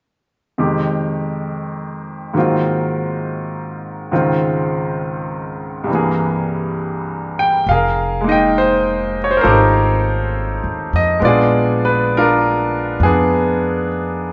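Jazz ballad in a slow, swung 4/4, intimate and smoky in mood, heard as a fragment of a longer piece. A bright baby grand piano opens alone at 0.6 s, sitting up front with a brilliant, natural tone and audible action noise as it voices rich chords such as Fm7, Ab13, Dbmaj9 and C7b13. At 7.7 s an acoustic upright bass joins, played pizzicato on gut strings with a woody, thumpy sound, holding the low end beneath the piano. The second passage moves through Fm11 and Bb7b9, with the two instruments playing together through 14.3 s. The recording has the moderate reverb of a recital hall, as if captured in a church or concert hall, and its top end is softly rolled off, giving the sound a mellow, late-night air.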